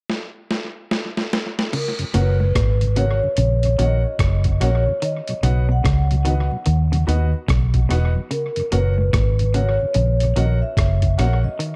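Roots reggae with a laid-back, uplifting mood, heard in a short cut from a longer piece built on a relaxed swung feel. A gritty, compressed sampler-style drum kit opens with a fill, its thumpy kick and high-tuned snare sitting up front alongside hi-hat, rim click and crash, with analog delay trailing the hits. At 1.7 seconds the band begins to arrive over a simple movement between F# and B: a clean semi-hollow electric guitar plays arpeggios in the background, and a moment later a mellow vibraphone played with soft mallets takes up the melody with a metallic, ringing tone and tape echo. Around two seconds in, a flute-like tonewheel organ adds soft accompaniment through chorus vibrato and a slow rotary speaker, and a grand piano contributes intimate stabs with audible action noise. Anchoring it all, a dark, round, foam-muted electric bass enters alongside the piano and sits prominently up front, and the echo-heavy mix carries a light reverb.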